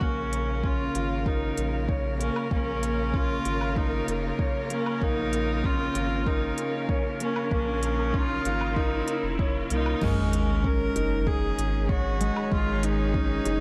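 A bright, biting viola carries the melody with light vibrato and a trailing delay, sounding earthy and a little distant over this intimate, cinematic piano and strings electronica piece in Bb minor at 96 BPM in a straight 4/4. Beneath it, a dark, mellow concert grand plays a delayed riff, while a clear, focused string quartet holds bowed chamber chords shaped by sidechain pumping, and a round analog bass with a fast attack pumps the same way down low. An overdriven, layered electronic kick drives the groove, joined from 0.3 seconds by a tape-toned electronic kit with crisp hi-hats, crash cymbal and woodblock, both re-recorded in a small room. A very faint riser and sub drop enter at 1.8 seconds as the passage builds over a Bb minor chord, and the drop and impact land at 10.0 seconds as the harmony shifts to Absus4. A lush hall reverb and a dusky, warm production wrap this short cut from a longer piece.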